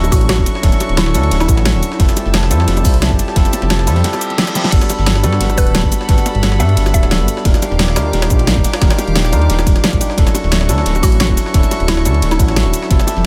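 Liquid drum and bass at 176 BPM in a straight 4/4, this dreamy, lush excerpt from a longer piece rolls through Dmaj9, Fmaj9, Gmaj9 and Ebmaj9 chords in an echo-heavy mix with light digital ambience. A deep, rumbling detuned saw bass sits up front, dark and saturated with a beating edge, under a punchy layered electronic kick and a tape-echoed pop drum kit with a fat snare. Behind them, a gritty, pitched-up jungle-style sampler kit with a high-tuned snare and filtered cymbals ticks away in the background, while very quiet, low-tuned bongos add soft, dry hand percussion. A bell-like tine electric piano plays clean accompaniment through dub echo, and a distant chamber string section holds earthy bowed chords with light vibrato and sidechain pumping. A woody, warbling FM pluck with chorus and dub echo drifts in for short mellow phrases at 0.1, 5.6 and 11.0 seconds, and a reverse cymbal rising into a drum fill at 4.6 seconds ushers in the Gmaj9 chord.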